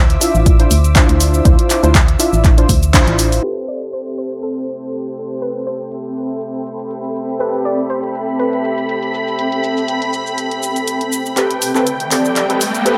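Round, mellow analog keys sit up front in this deep, moody deep house excerpt, playing detuned sawtooth stabs that carry chorus, sidechain pumping and a dub echo while a filter sweeps across them through the middle stretch. Beneath them a hollow, organ-like FM bass and a punchy, tape-warm electronic kick drive the opening over a Dm9 chord, with a small-room analog drum machine adding hi-hat, shaker, handclaps and crash cymbal throughout. A slow-blooming ambient pad of unison saws and a sine sub octave breathes with the sidechain, and a shimmering vintage string machine with violins drifts above in ensemble chorus. At 3.4 seconds the harmony turns to Am9, the bass and kick have dropped out, and a soft triangle-and-sine pluck with a noise layer and ring modulation takes the melody through chorus and dub echo. A cloudy, blurred granular pad rises in at 5.5 seconds, the strings return, and from 11.4 seconds a drum fill, joined at 11.7 seconds by an electronic riser, builds toward the cut, all set in a moderate digital room reverb with a swung feel.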